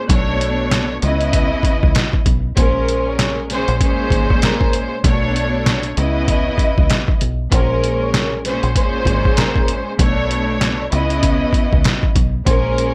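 A lush, intimate string section, bowed sul tasto with vibrato and given a cassette-tape, filtered tint, opens this tough, reflective boom-bap hip-hop excerpt at 97 BPM. A gritty, compressed, pitched-down sampler kit with a thumpy kick and a round, foam-muted dark electric bass join it at once, all riding a swung 16th-note feel over a cycling Bm9, Dbm9 and Bbm9 progression. From 2.6 seconds a mellow, ringing soft-mallet vibraphone with delay and filtering carries the melody in the background, and the whole mix stays dry.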